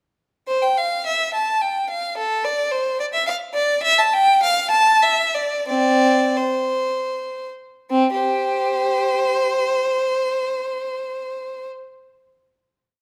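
A moderate recital-hall reverb surrounds a single, close, clear violin in this short, complete baroque-style suite movement in C major, serene and flowing in 3/4 with a rubato pulse between 74 and 111 BPM. The bowed line, focused and up front with vibrato, moves between C4 and A5, mixing double stops and spread chords into a melody that leaps to bass notes. The pace slows from 3.0 to 7.9 seconds, and a final chord follows; the violin stops at 11.7 seconds while the hall rings on.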